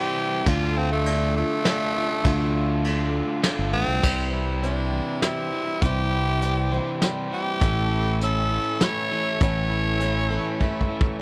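Wistful and reflective, this short cut from a longer folk rock and heartland rock piece moves in a straight 3/4, with a raspy, gritty tenor saxophone carrying the melody up front and taking a solo in the opening 4.0 seconds over chords moving from Dm to C to A. A bright, boxy picked acoustic guitar in swing style and a crunchy, double-tracked overdriven electric guitar riff play throughout, joined at 0.5 seconds by a round, dark fingered bass and a soft brush drum kit with a fat snare and punchy kick that ends on a fill at 10.6 seconds. A very quiet, reedy musette accordion adds shimmering sustained chords, dropping out after 4.0 seconds and returning at 7.6, all captured in a dry, close 1970s-style studio sound.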